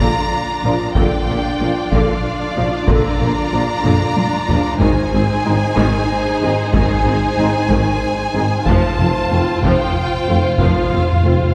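Epic orchestral film score in 6/8 at 62 BPM, triumphant and majestic in Bb mixolydian, where lush bowed violins carry a smooth, expressive melody over a focused second violin line and distant viola accompaniment; a very quiet cello section, woody double basses and a mellow tuba anchor the bass while hard-stick taiko drum in a live room with a fill at 3.8 seconds; a background French horn section sustains chords from 0.6 seconds, and round, soft-mallet timpani enter at 8.7 seconds with a fill as the harmony moves from Bb to Ab to F, all set in a wet scoring-stage reverb heard from further back in the room in this excerpt cut from a longer piece.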